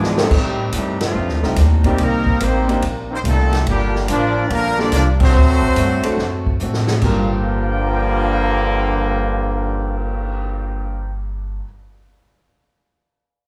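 Brassy and sultry, this brief big band swing excerpt in G minor at 143 BPM sets a loose, clear trumpet section on the melody over a bright, up-front trombone section, with a clear, intimate baby grand piano and a boxy picked archtop guitar in the background, a woody, growly pizzicato upright bass, and a swinging drum kit with a punchy kick whose fills open the piece and lead into the second section at 7.0 seconds, all heard as a band playing live in one room with moderate large studio reverb.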